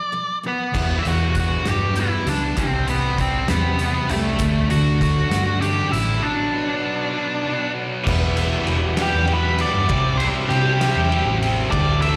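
A slow 6/8 pulse at 66 BPM, counted in dotted quarters with a straight feel, carries this short, angsty and cathartic passage of quiet-loud alternative rock in E minor, cut from a longer piece. A dark, up-front octave-fuzz lead guitar sings the melody from the first moment, over a full-bodied, dreadnought steel-string acoustic guitar that picks arpeggios in the background with a slapback echo until 4.4 seconds. At 0.7 seconds the heavy band crashes in with an oversized, low-tuned acoustic drum kit with dark cymbals, a fat snare, a boomy kick and a gritty, pumping big-room sound. A round, amped hollow-body short-scale bass set up front follows a moment later at 0.8 seconds. Two guitar riffs fill out the band: a very quiet, double-tracked distorted electric guitar, and a thick fuzz guitar with a bright edge sitting in the background. An overdriven, compressed electric guitar with slapback echo joins at 8.0 seconds as the lead guitar takes a solo over chords moving from Em to C. 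The whole performance has the feel of a live gig heard through a venue's PA, wrapped in small-room and recital-hall reverb.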